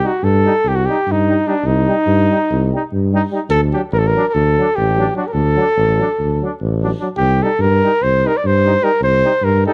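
A brisk 9/8 pulse with a straight feel drives this short cut from a longer Balkan brass band piece, its mood both fiery and bittersweet. Up front, a mellow flugelhorn carries the melody in a classical style with light vibrato, close-miked and detailed. The tuba sits equally forward on the bass line, its tone also touched by light vibrato. Behind them, a brilliant trombone sounds distant and roomy, while a warm, vintage-toned euphonium stays in the background, both filling out the accompaniment. The harmony moves from C minor to D and back to C minor, and light reverb gives the ensemble a little space across the roughly 9.7 seconds.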